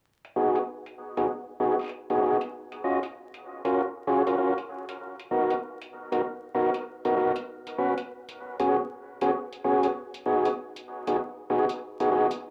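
Swung sixteenths in 4/4 drive this playful, gritty glitch hop fragment, where faint metallic, layered electronic hi-hats re-recorded in a small room sit beneath up-front stabs of full, lightly overdriven tonewheel organ with key click, vibrato, a stopped rotary speaker and tape echo, moving through G#m7, F#maj7, Bmaj7 and C#7sus4 before returning to G#m7 at 10.0 seconds, all bathed in plate reverb with dry hardware grit, transformer saturation and vinyl crackle.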